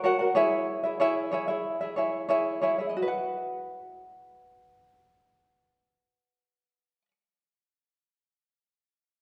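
Pop in B major at 92 BPM, this easy-going, carefree excerpt from a longer piece features a bright, light tenor ukulele, thumb-plucked and up front, playing accompaniment from 0.0 to 7.1 s across C#m and B chords, set in the wet reverb of a recital hall.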